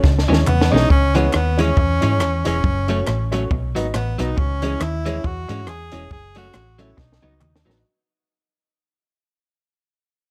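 A swung 4/4 ska groove at 138 BPM in C# minor, driving and mischievous, cut from a longer piece and fading out from 0.9 s, rides on a dry, punchy compact cocktail drum kit with a high-tuned snare and fills at the start and near the end, a dark, round hollow-body short-scale fingered electric bass up front, a clean picked electric guitar accompaniment bathed in spring reverb, a very quiet semi-hollow electric guitar riff, woody, boxy upright piano stabs with plate reverb entering at 0.3 s, a clear tenor saxophone melody with vibrato coming in at 0.5 s, and crisp group handclaps, over a C#m, F#m, B progression.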